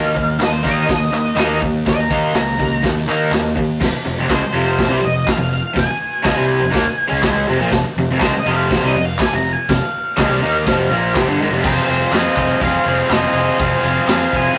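A dark, fuzzed-out lead guitar solo opens this menacing, swaggering garage rock excerpt, alongside a bright, double-tracked overdriven riff guitar that sits up front and a punchy, fuzz-laden picked bass. A gritty, saturated drum kit with dark cymbals and a rolled-off top joins at 0.2 seconds, with crisp group handclaps tucked in the background, and the solo gives way to the next section at 3.8 seconds. The whole take has the rough feel of a rehearsal room, with tube saturation and a moderate stone-room reverb.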